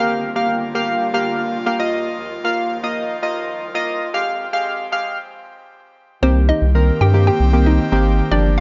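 A straight 4/4 pulse at 115 BPM drives this confident pop piece in C minor, cut from a longer track. Up-front analog keys with a fast attack and decaying square and sawtooth tones carry the accompaniment, while an airy, breathy pad holds sustained chords beneath them with a slow attack and long release. A deep, dark analog bass, round with a nasal edge, anchors the low end throughout. The opening build-up moves from Gm7 through Ebsus2 to Fmadd9 and reaches a stop at 5.2 seconds. At the 6.2-second drop, on Cm7, a hollow, bouncy square pluck enters with a warbling, vintage melody. Chorus colours the keys, pad and pluck, and light reverb and a capped top end round out the mix.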